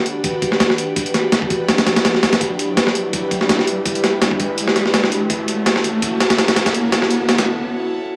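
A gritty, crackling hardware recording in a lush hall opens this dark, frenetic drum and bass excerpt at 166 BPM, where an airy, breathy pad holds chorused Gmaj7, Em7 and F#m7 chords while an electronic riser builds from 0.2 seconds and an up-front, compressed breakbeat kit with a thumpy kick, medium-tuned snare and swung hi-hats drives the build-up until both drop out at 7.5 seconds, leaving the pad alone in a brief break.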